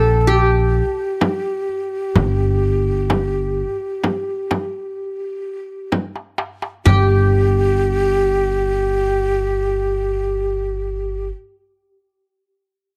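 A bright, fingerpicked qanun carries the melody from the start, joined by a breathy, hollow ney with vibrato and a crisp attack playing a second line, while a woody, growly pizzicato upright bass sits up front beneath them. This soulful, longing fragment is from an Arabic maqam ensemble piece in G minor, tuned to A4 = 436 Hz, in a straight 10/8 at 128 BPM counted in eighths. A warm frame drum played with hard hands and a soft-handed, metal-shelled darbuka further back join at 1.2 seconds, play a drum fill from 5.9 seconds and drop out at 7.3 seconds as the music moves into a new section, all captured in a dry, close 1970s-style studio sound.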